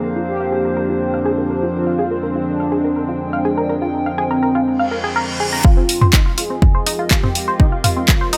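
A mellow synth brass carries the melody in this cinematic, melancholic melodic techno clip, its round, brassy tone colored by chorus, phaser, vibrato and delay, and pumping against the beat through sidechain compression. Beneath it, a tight sequenced synth spins driving, detuned sawtooth arpeggios with a plucky filtered edge, and a filter sweep moves across its sound through the opening section. An evolving wavetable pad holds full-bodied, morphing chords low in the mix, while a nostalgic, lo-fi tape-like pad adds a warbling texture with slow attacks and long tails. A reverse cymbal rises at 4.8 seconds into the change of section at 5.6 seconds, where a punchy, up-front electronic kick arrives and the harmony shifts from the opening Bbadd9/F chord to F minor. From 5.9 seconds a house drum kit adds handclaps, toms and warm hi-hats as the passage builds, with a filter sweep now moving across the ambient pad under a light reverb.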